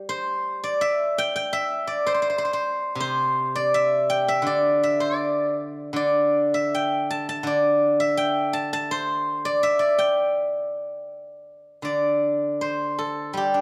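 A solo steel-string zither, played with fingerpicks, opens this flowing, elegant passage of Chinese traditional plucked-string music, its silvery, ringing tone sitting up front in a moderate recital-hall reverb. The piece moves at 81 BPM in 2/4 with an uneven, rubato feel in the G zhi mode, ranging from C3 to A5. A new section begins at 11.8 seconds before this portion of a longer work breaks off at 13.6 seconds.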